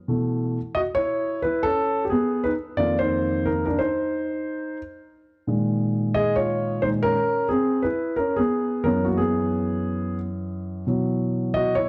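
A dim, close-sounding recording with light reverb and a small room ambience gives this solo piano excerpt a smoky, late-night feel, its production dark and free of any high-end sheen. It sits in hip hop territory at 89 BPM in 4/4, with a 16th-note swing that lends a loose, laid-back lean. The grand piano is the only voice, entering at 0.1 seconds and playing through to 11.9 seconds, spanning F2 to Eb5. Its tone is mellow, smooth and intimate with a vintage character, placed up front, and the audible action noise of the instrument comes through. The harmony moves through suspended colours, from B9sus4 to F7sus4, Bb9sus4 and Gb9sus4 before settling on Bsus24 at 10.9 seconds, keeping the nocturnal mood unresolved.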